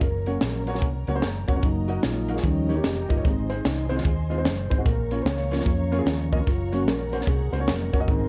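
A swung 4/4 groove at 149 BPM drives this short, soulful and reverent uptempo gospel clip, with a crisp fusion drum kit of punchy kick, high-tuned snare and hi-hat sitting up front in a pumping room, and a dark, round hollow-body electric bass underneath. A soft, flute-like tonewheel organ with key click and slow rotary speaker takes the lead with sustained chords over a clear grand piano entering at 0.3 seconds, while a lush, woody string section with vibrato hovers in the background through a progression moving from Gb to Eb7, Ab and Bbm. Light small-room reverb and a worn, warbling cassette-tape pitch drift give the whole clip an aged, intimate character.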